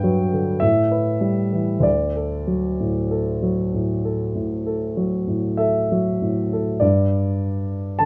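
A dark, mellow concert grand piano sits up front with deep bass in this serene, nostalgic romantic nocturne in D major, drifting in rubato around 47-54 BPM through Gmaj7, Asus2 and D before a new section opens on G5 at 6.8 seconds, all captured by close, detailed microphones in light reverb as a brief cut from a longer piece.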